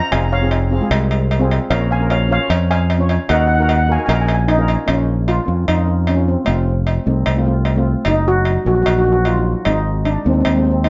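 Dramatic and tense, this calypso piece moves at 151 BPM in a straight 4/4 feel, set in Bb minor and cut from a longer work. A lead steel pan carries the melody with a shimmering, dark tone from soft rubber sticks, its notes trailed by a digital delay. A second pan, a double seconds, fills in the accompaniment beneath it with the same mellow, smooth character. Sitting up front, a fingered electric bass brings a growly, punchy, amped edge that is the most forward part of the mix. A compressed, saturated cowbell sits in the background, and the harmony shifts from Fm and Bbm7 through Ebm before the second section, starting near 4.9 seconds, moves through F and Ebm/Gb to close on Ab. The room carries a light reverb, and the top end is rolled off, giving the whole recording a dusky sound.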